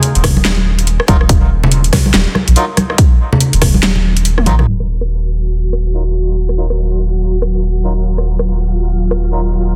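A half-time deep dubstep groove at 142 BPM swings its 16ths in Eb minor, built on a punchy, tape-warm kick that drops away after 3.7 seconds, a drum kit with a huge, softly clipped snare, metallic hats, handclaps, rim clicks and toms, and ringing hard-hand congas from a live room, all under a deep, round sub bass that holds up front throughout. Brooding and meditative, the drop gives way to a short drum fill before an Ebmadd9 chord arrives at 4.7 seconds, while reedy, nasal melodica stabs drift through dub echo. At 5.2 seconds a mellow, wind-like tuned noise texture fades in with its own reverb, thickening a dense, heavily limited, low-pass filtered mix in a small room.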